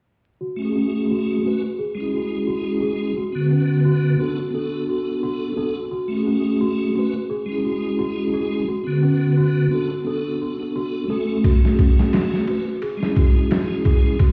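Trip hop at 87 BPM in F# minor, with a lightly swung 4/4 feel and a melancholic, dark mood, taken from a longer piece. A worn celesta plays delicate, bell-like arpeggios from 0.4 seconds, its sweet tone slightly out of tune and softened by a low-pass filter, a filter sweep and digital delay. Beneath it, an up-front tonewheel organ supplies piping, scooped accompaniment with audible key click, chorus vibrato, a slow rotary speaker, harmonic tremolo, 12-bit sampler grit and tape echo. The chords cycle through F#madd9, C#m, D6 and Bm7. At 11.4 seconds a compressed, pitched-down boom bap sampler-style kit arrives with a thumpy kick, medium-tuned snare and ride cymbal, gritty and tape-warm in studio reverb. The whole scene sounds muffled through a wall, set in a stone room with vinyl crackle.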